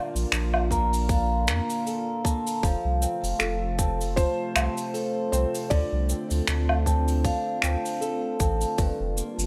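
Folktronica with a warm, hopeful mood and a gently swung 16th-note feel, this short excerpt opens on a felt-muted upright piano carrying a soft, intimate melody with audible action noise and delay, over a warbling, nostalgic tape-like pad of detuned sustained chords treated with chorus, phaser and 12-bit sampler grit. A dark, boxy fingerpicked ladder-braced acoustic guitar plays delayed arpeggios, while a round sine sub bass and an up-front jazz brush kit with cabasa, finger snaps, hi-hat and woodblock enter at 0.2 seconds. At 0.7 seconds a tight, tape-colored electronic kick joins, along with a metallic, ringing vibraphone with slow motor vibrato and digital delay playing a second line. The piano drops out at 7.2 seconds as the chords move from Bbmaj7 through F and Dm7 to Gm7 under light reverb.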